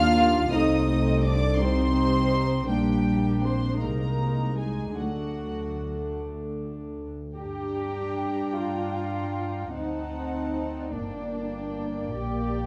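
Solemn and melancholic, this slow romantic movement for string orchestra unfolds in G minor, its 6/8 metre moving at roughly 48-57 dotted-quarter beats per minute with a flexible, rubato feel. A clear, pure violin section carries the high melody, floating above a second violin line that sounds intimate and close, with light vibrato and a soft attack. Beneath them, dark violas supply a smooth accompaniment, while smooth-topped cellos with light vibrato and a distant yet up-front double bass section anchor the bass, every section bowing sul tasto. The harmony moves from C minor through an A-flat chord to D, then turns back to G minor at 7.4 s, passing a D7b9 before reaching B-flat as the fragment breaks off at 12.7 s. A moderate scoring-stage reverb gives the warm production a gentle sense of space.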